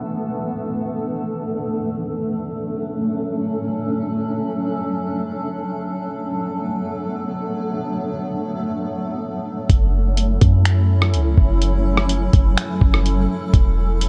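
A blurred, granular cloud pad opens this melancholic, hazy cloud-rap fragment in free time, its sustained chords drifting through reverb, sidechain pumping and a filter sweep over E7sus4, Dmaj7 and Bm7 until 9.7 seconds, when a deep, boomy 808-style bass and a muffled, pitched-down lo-fi drum kit of thumpy kick, hi-hat, rim clicks and finger snaps with 12-bit sampler grit join it over F#m7 in a lightly reverberant room.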